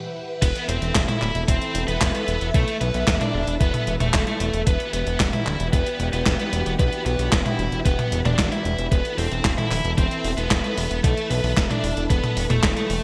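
Bittersweet and nostalgic, this italo disco excerpt moves at 113 BPM in a straight 4/4, with a bright, 1980s-style digital sheen and a moderate plate reverb around it. A swirling, warbling string machine opens alone, holding sustained chords through ensemble chorus, phaser and shimmer reverb, before the full band arrives at 0.4 seconds. From there a high-gain lead guitar carries the melody up front, its distorted, picked tone trailed by delay and shimmer reverb. Beneath it, a fat, detuned sawtooth bass with a filter pluck sits forward in the mix. A clean 12-bit drum machine supplies a medium-tuned snare, handclaps, hi-hat, toms and crash cymbal with tape-like warmth and gated reverb, while a thumpy electronic kick drops out at 12.7 seconds. The harmony shifts from Amadd9 to Em7 and back to Amadd9, giving the passage its wistful lift.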